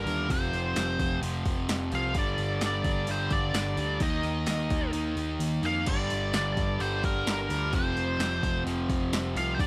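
A straight, driving 4/4 pulse at 129 BPM anchors this heavy hard rock clip, where a deep house drum kit with a deep kick, punchy snare and overdriven, small-room character sits up front from 0.1 s (its kick and snare dropping out between 4.9 and 5.9 s), while a growly picked electric bass holds down the low end and a bright distorted electric guitar and a hollow-bodied overdriven semi-hollow guitar pound out riffs over F5, G5, Eb5, Gm and F5 chords, and a dark, nasal lead guitar with a parked wah carries the melody up front, all in a dry sound.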